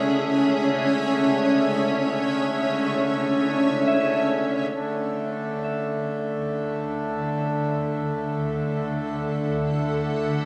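Ambient excerpt in free time and D lydian, serene and luminous, where a cloudy, blurred granular pad holds sustained chords with shimmer reverb up front, a reedy, breathing hand-pumped harmonium drones beneath, and a very quiet, pure FM synth bell with chorus and phaser plays arpeggios, the harmony moving from C#m to D at 4.7 seconds as the pad fades in through the rest of the dark, reverberant stage.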